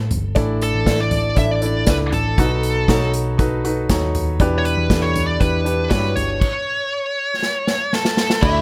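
Uplifting, warm piano-driven pop at 119 BPM in a straight 4/4, cut from a longer piece, with a smooth, vintage concert grand carrying the Asus4, B7 and Em7 changes under plate reverb while a bright, high-gain lead guitar sings the melody up front, also bathed in plate reverb. A dark, round hollow-body electric bass and an up-front acoustic kit played with bundle sticks, punchy kick and medium-tuned snare drive the groove, and the kit rolls into a drum fill at 7.4 s. At 8.4 s, as the section closes, a crunchy overdriven guitar picks a single brief riff note, all set in a moderate studio room.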